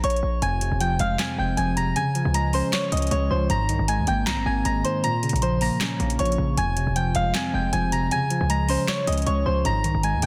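This eerie, hard-hitting trap piece in F minor opens with a soft, pure FM synth bell carrying the melody up front, over a punchy, heavy 808-style bass with a noise layer and a booming analog drum machine of crisp snare, metallic hi-hat and handclaps, tape-warm and re-recorded in a large room, at a half-time 156 BPM. At 0.4 s detuned lo-fi synth keys join with a nostalgic, warbling chorus and a filter sweep, moving through Fm, Db, Abadd9 and Bbm. Light reverb and digital ambience surround a dense, heavily limited modern master.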